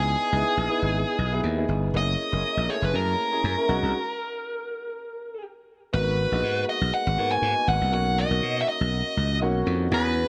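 Lightly swung sixteenths ride over a steady 4/4 groove in this breezy, glossy slice of polished 1980s jazz-funk pop, cut from a longer piece. A growly, punchy slap bass sits up front, bright and direct, anchoring the low end throughout. A nasal electric lead guitar carries the melody, picked and overdriven through a parked wah, also placed up front. Behind it, a baby grand piano supplies accompaniment with an open, long-sustaining tone treated with lush chorus. The harmony moves through minor ninth, dominant seventh and sixth chords before a stop from 3.9 to 5.9 seconds, then a second section settles onto a minor ninth and a major seventh. Light reverb frames the mix, and lossy compression artefacts colour the sound.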